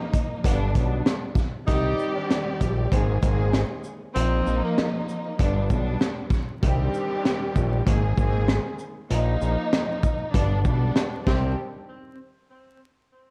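Moody and reflective, this boom-bap hip-hop excerpt in C minor moves at 97 BPM with a swung 16th-note feel, as a gritty, saturated breakbeat kit with a tight kick and high-tuned snare sits up front beside a fat, detuned analog bass built from sawtooth and square waves. A bowed string section with vibrato and portamento carries the chords through a cassette-tape filter, cycling from Cmadd9 to Abadd9 to Bbsus4 and back to G, while a mellow tenor saxophone with subtone and scooped notes enters at 1.7 seconds for a short jazz-style phrase colored by tape echo. The dark production wears light studio reverb and a layer of vinyl crackle.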